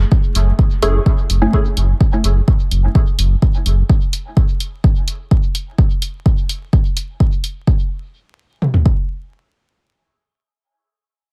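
Dub techno at 127 BPM in a straight 4/4, this short cut from a longer piece feels meditative and hazy. A round, dark analog bass sits up front from the start, sustained and sidechain-pumped until 3.8 seconds. The deep house drum kit carries a deep kick and toms with a tape-warm, small-room character, joined by a quieter electronic hi-hat trailing dub echo. Early on, a muted, detuned chord stab flickers briefly, its filter-plucked sawtooth and pulse tones roughened by 12-bit sampler grit, swirled through a phaser and sidechain-pumped. The mix is dry of reverb but heavy with echo, laced with vinyl crackle, and the drums carry on to 9.0 seconds before a final stretch that runs to 11.3 seconds.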